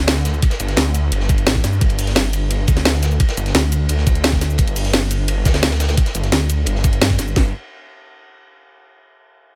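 A snarling, detuned saw bass growls up front from 0.0 s, distorted and pumping against the sidechain under a filter sweep, driving this tense, mechanical dark technical drum and bass excerpt at 173 BPM in 4/4 (tuned to A4 = 437 Hz), while two layered electronic drum and bass kits, one with cabasa and hi-hat and the other with a knocking kick entering at 0.4 s, both with cracking snares, sit up front over a quieter, gritty, saturated acoustic breakbeat kit with dark, rolled-off cymbals, all set in a small room ambience.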